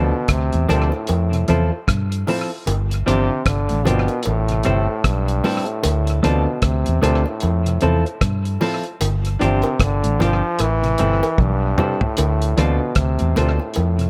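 Laid-back and uplifting, this roots reggae passage moves at 76 BPM in 4/4 with a swung sixteenth-note feel, cut from a longer piece. A bright trombone carries the melody with light vibrato and a present, soloing voice, its lines trailing dub echo, while a clean, picked electric guitar supplies compressed accompaniment colored by tremolo and its own dub echo. Beneath them, a mellow electric guitar plays very quiet, dark arpeggios, and a clear, woody upright piano adds stabs from the background. The vintage muted fingered bass sits up front, round and punchy with a foam-muted, amped tone, anchoring the cycle of Dm7, Fmaj7, G7sus4 and Am7. The cloth-damped, thuddy drum kit enters at 0.3 seconds with a tight kick, rim clicks, hi-hat and toms touched by tape echo, playing a fill from 11.4 to 12.2 seconds, while high-tuned bongos with hard hands join at 0.7 seconds under light reverb.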